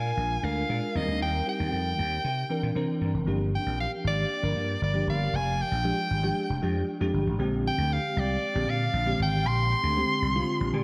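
Soaked in a lush, dreamy hall reverb, this polished 1980s jazz-funk pop excerpt at 116 BPM has an urban, nocturnal mood, with an edgy, forceful soprano saxophone carrying the jazz-style solo melody through diffuse ambient delay, a sparkling, bell-like FM electric piano with ensemble chorus comping over chords such as Bb7, Gm7 and Bb13 before a brief fill at 10.5 seconds, and a growly, punchy vintage slap bass sitting up front as the music shifts into a new section at 3.3 seconds.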